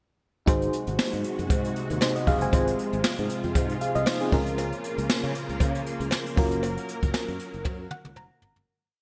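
Glossy and nostalgic, this brief 1980s-style pop piece moves through a pre-chorus with a gentle swing on the sixteenths, over chords running from Ab7 to Gbmaj7. An FM electric piano with tremolo holds mellow, close-voiced chords with a fast attack and a noise layer. A vintage string machine voicing cellos supplies a full sawtooth pad with a sub octave, slow attack and ensemble chorus. A sustaining fretless bass, growly and punchy with its own chorus, plays a syncopated pop-funk line dotted with muted ghost notes. Up front, a jazz brush drum kit brings an airy, polished small-room sound with a boomy kick and a big backbeat, while a very quiet, dry cowbell taps out quarters. The bright digital production carries a moderate plate reverb, and the piece fades out from 6.6 seconds as the drums and electric piano play fills from 7.7 seconds to the close at 8.7 seconds.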